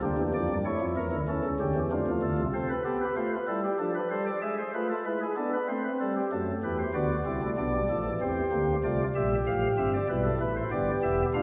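Classical baroque-style four-part fugue in 3/4, elegant and joyful, heard from further back in a reverberant scoring-stage room, played solo by a pipe organ on soft flute stops with chiff, tremulant and a baroque voicing spanning D1 to F5, set up front through a short fragment cut from a longer piece that shifts into a second section at 6.3 seconds.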